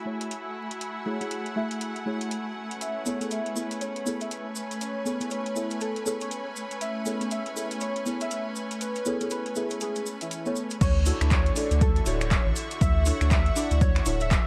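A punchy, overdriven electronic kick sits up front when the drop arrives at 10.8 s, joined by a round, dark analog bass with sidechain pumping. Before that, this sunny, relaxed deep house piece in swung 4/4 builds on mellow, wave-folded chord stabs treated with chorus and phaser, an airy, breathy pad with a noise layer, and a clear symphonic string section playing smooth, evenly bowed textures, all three pumping against the beat. A layered, overdriven drum kit of metallic hi-hats, finger snaps, handclaps and crash cymbal carries the groove from the start. At 2.8 s a velvety synth lead with vibrato, chorus and delay takes the melody, while a grainy acoustic cabasa sits in the background. The harmony moves through lush ninth chords, and the mix is dark and warm, with light reverb and a bed of vinyl crackle, cut from a longer piece.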